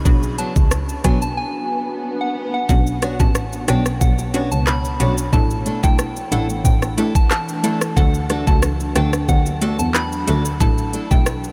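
A straight dancehall groove comes from an overdriven, up-front electronic kit of knocking kick, crisp hats, handclaps, rim click and shaker, anchored by a bowed double bass that sounds earthy and nasal with light vibrato. Over a mellow, ethereal pad, a hollow, bouncy square-wave pluck and a fingerpicked acoustic guitar play in the background while a pure FM synth bell carries the tape-echoed melody. An electronic swell fills a brief break from 1.5 s, and very quiet, low-tuned vintage bongos join at 2.7 s, all bathed in a huge, dreamy reverb that gives this hypnotic yet tough excerpt its haze.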